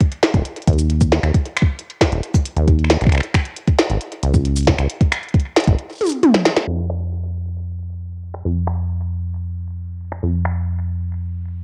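A straight 4/4 pulse drives this melancholic, glitchy IDM piece, where a soft, up-front electronic kick with a tape-softened tone drops out at 5.8 seconds and a glitchy kit of tiny snare, clicky low-passed hi-hats, cabasa, finger snaps and toms plays a fill from 6.0 to 6.7 seconds, over a deep, rubbery, resonant sawtooth acid bass with dark, tube-saturated, plucky decaying notes, the cassette home recording muffled by a low-pass filter and light reverb.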